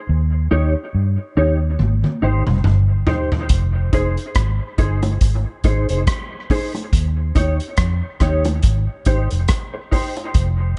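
A round, foam-muted electric bass opens this meditative dub reggae excerpt at 0.1 s, sitting up front and punchy in the low register over an Eb7 chord. A mellow, clean guitar joins almost at once, fingered and compressed, softened by ensemble chorus and a high-pass filter, with dub echo trailing its notes. At 1.8 s, as the harmony settles on Fm7, a vintage acoustic drum kit arrives with a fill of toms, kick, rim clicks and hi-hat, its kick hitting hard and its small room pumping around it. Low-tuned bongos played with soft hands enter at 3.9 s, set back in the mix, filtered and echoed into the dub space. The slow 70 BPM pulse swings gently in F minor, alternating between Eb7 and Fm7 in a hypnotic cycle. The whole production is dark and rolled-off at the top, giving it a hushed, enclosed feel.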